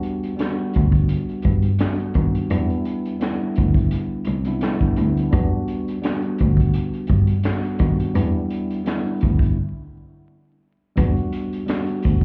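A crunchy, saturated breakbeat kit drives this gritty, dark boom-bap hip-hop excerpt, its punchy kick, high-tuned snare, hi-hat and handclaps sitting up front with a swung, rolled-off feel. Beneath it a single bowed cello carries the bass line with a reedy, gut-string tone, while a mellow tine electric piano, treated with cassette tape, plays chords moving from a rootless Em7 through a rootless Cmaj7, then Em7 and G6. The whole mix sounds muffled through a wall with club reverb and vinyl crackle, and after a break at 9.6 seconds, faint jingly sleigh bells appear in the background at 11.0 seconds.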